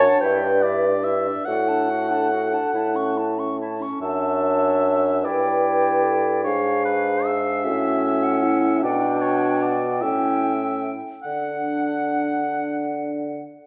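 A serene, tender slow romantic movement for wind quintet in D major opens with the whole ensemble together, its concert flute singing the melody in a pure, straight tone over an oboe second line with light vibrato, a distant clarinet and a soft-attacked French horn in the background, while an up-front, mellow bassoon carries the bass in a rubato 6/8 at about 46-51 BPM, the wet recital hall reverb adding space as the harmony passes through chords like E13b9/G# and A7 before settling on D at 11.3 seconds in this excerpt from a longer piece.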